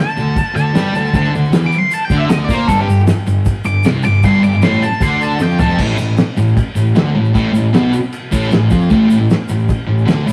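A rough rehearsal-room recording soaked in wet stone-room reverb carries this swaggering, gritty garage rock fragment, where a dark octave-fuzz lead guitar solos over a double-tracked, up-front thick fuzz guitar riff, growly overdriven fingered bass, a cloth-damped thuddy kit with fat snare and dark cymbals, and a grainy tube shaker in the background, until a drum fill at 5.4 seconds hands off to a new section at 5.8 seconds where the solo drops away.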